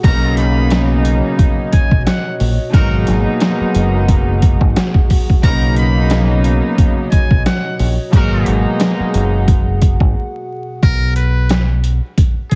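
Heavily compressed and radio-like, the sound sits in a small room under a layer of vinyl crackle, giving this dark, reflective boom-bap hip-hop cut a worn, lo-fi character. Up front, a gritty, pitched-down sampler-style drum kit pairs a thumpy kick and medium-tuned snare with hi-hat over a lightly swung sixteenth-note feel, while a round, deep dub fingered electric bass anchors the low end. A metal-muted trumpet carries the jazz-style melody with a buzzy, thin tone, soft attack and slapback echo, and a distant, nasal trumpet section adds straight-muted stabs. Underneath, a bowed studio string section with gut-string tone and cassette-tape color plays the accompaniment, and a moody, detuned analog pad holds slow-attack chords with chorus, as the harmony alternates between Bmaj9 and G#m9. The strings drop out at 10.2 seconds for a brief break, and from 10.8 seconds the harmony falls away, leaving drums, bass and the solo trumpet, with the bass stopping at 12.0 seconds.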